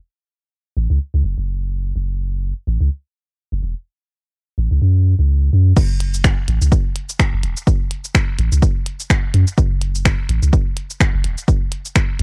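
Hypnotic, sparse minimal techno in F# minor at 126 BPM with a light 16th-note swing, this dry, cassette-recorded passage from a longer piece opens at 0.8 seconds with a deep, mellow sine sub bass that has a pitch-drop attack and sidechain pumping, until the drop at 5.8 seconds brings in an up-front, layered, tape-warm punchy electronic kick and a quieter overdriven click kit of clicky hi-hats, cabasa, crash cymbal and finger snaps.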